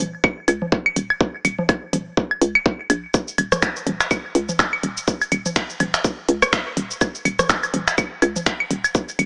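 This short minimal techno excerpt features a hollow, knocking FM bass. Its punchy, fast-attack notes decay into a mellow, bouncy tone, while sidechain pumping makes it breathe with the beat. An overdriven electronic kick drum enters at 0.2 seconds, tight and up front, and shares a small-room, re-recorded character with a minimal click drum kit of finger snaps, clicky hi-hats and shaker, which carries its own overdrive. Electronic congas, claves and rim clicks add an analog, tape-warmed layer trailed by tape echo. The groove swings its sixteenths in four-four, and the mood stays hypnotic and sparse, set in light digital ambience with a small-speaker sound.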